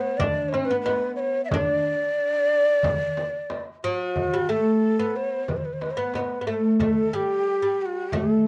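Warm and festive, this short excerpt cut from a longer piece is an Arabic maqam ensemble piece in straight 4/4, carried by a breathy, close-miked ney whose reed-cane tone wavers with vibrato and an unsteady, soft-attacked voice up front. Beneath it, a woody, deep oud plucked with a plectrum on fretless double strings plays a second line, both parts colored by cassette tape. From 0.2 seconds, a small, high clay-shell darbuka struck with hard hands sounds distant in a large room, while a large, deep frame drum rounds out the percussion, all set in a wet booth ambience that gives the whole a homemade intimacy.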